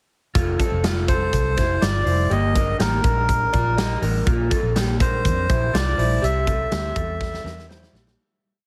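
Jangly indie pop at 122 BPM in F major, bright and youthful. A big, roomy rock kit drives a brisk indie backbeat with a punchy kick and medium-tuned snare, a round, foam-muted fingered bass plays a melodic line with slides, and a slightly broken-up, lo-fi guitar rings out a picked arpeggio figure doubled in sixths. A reedy, nasal melodica enters at 1.1 seconds with a smooth, motif-based melody in sentence-like phrases over chords moving from F through Eb/G and Bb to C, and the short, heavily compressed, radio-like verse with light reverb fades out from 6.2 seconds as the drums close with a fill at 7.2 seconds.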